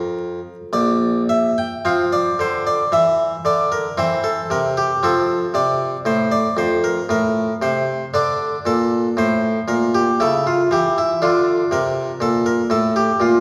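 A solo harpsichord opens on a Bb chord, its plucked, bright tone ringing through a wet recital hall. This is an excerpt from a classical, baroque-style suite movement in triple metre, radiant and flowing in mood, with uneven beats and a rubato that lets the phrases breathe. The Flemish-style instrument, with one set of strings, sounds mid-forward and sits up front, spanning from Bb1 in the bass to G5 at the top. The harmony passes through C/E, F and a C#dim chord around 10.2 seconds before settling on D5 at 11.2 seconds. The reverb gives a sense of listening from further back in the room, and a vinyl crackle adds an aged patina to the sound.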